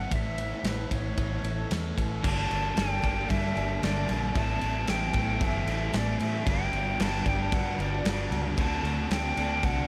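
An airy concert flute melody with tape echo floats over a shimmering, very quiet twelve-string acoustic guitar, a reverse-reverb electric guitar riff through a small old amp, a thick fuzz guitar with ensemble chorus, a round foam-muted fingered bass and a loose indie drum kit with a punchy kick, joined at 2.2 seconds by a double-tracked overdriven guitar, all drifting at 114 BPM through Aadd9, Gmadd9, Am7, Gmaj7 and D7 in a wistful, blissful shoegaze and dream pop mix soaked in a huge ambient reverb.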